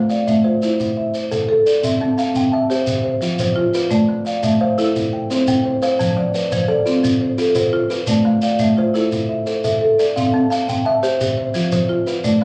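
Rippling and gently warm, this short passage from a longer piece is a southern African traditional mbira-style interlocking cycle in 12/8, moving at 115 BPM with a straight feel. A kalimba and a marimba both spin arpeggios from F3 up to A5 throughout the 12.4 seconds. The kalimba sits up front with a mellow, soft, fingertip-plucked tone off a solid board, its short notes mid-forward. The marimba, struck with medium mallets on padauk bars, adds a warm, woody body alongside it. A grainy shekere joins at 0.1 seconds, sounding distant as if from a large room. The harmony circles through A minor, C and F with a light reverb, in a compressed, club-like ambience captured on a phone in the room.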